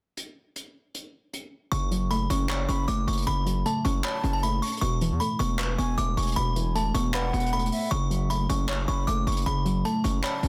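Eerie and brooding, this half-time trap cut from a longer piece opens with a distant, roomy brush drum kit carrying handclaps and hi-hat alone until 1.7 seconds, when a delicate, tinkling FM tine bell melody with chorus and delay, a warbling, lo-fi detuned pluck and an aggressive, saturated 808-style bass sitting up front all enter, joined at 2.7 seconds by a breathy concert flute with vibrato in the background, all within a dense, heavily limited modern master.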